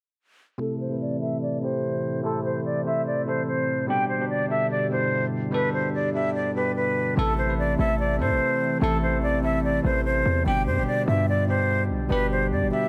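A half-time hip hop groove sets a tense, dark mood in this excerpt, where a breathy, close-miked concert flute carries the melody over a bright, bell-like tine electric piano and a hollow, airy pad with chorus in the background, while a filter sweep runs until a punchy, heavy 808-style bass drops in at 7.2 seconds, with light reverb around the mix.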